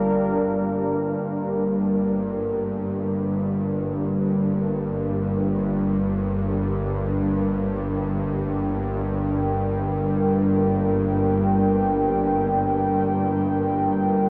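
Unfolding in free time, this ominous dark ambient drone in G minor, tuned to A4 = 438 Hz, is a short cut from a longer piece, resting on a single G minor chord throughout its 14.3 seconds. A deep, mellow pad with chorus sustains chords in the middle register from the start, while beneath it a tense, nasal, string-like bowed drone holds low G notes with vibrato and a grainy noise layer. Both parts sit up front yet are steeped in a cathedral reverb with a long 5.3-second decay, and the whole recording carries the worn, warbling pitch drift of old cassette tape.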